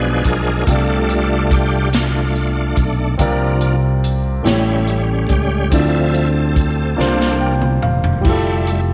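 Slow gospel in a straight 6/8, jubilant and soulful, this short excerpt cut from a longer piece features a bright, shouting tonewheel organ taking the solo across its full 8.9 seconds, lightly overdriven with chorus vibrato and a fast rotary speaker. A grand piano with audible action noise and long sustain accompanies, a direct, up-front fingered electric bass anchors the low end, and an airy, polished drum kit with dark cymbals and a punchy kick enters at 0.2 seconds. The drums and piano each play a fill from 7.0 to 8.2 seconds before the harmony settles on an Fmaj9, all in a small room with light reverb.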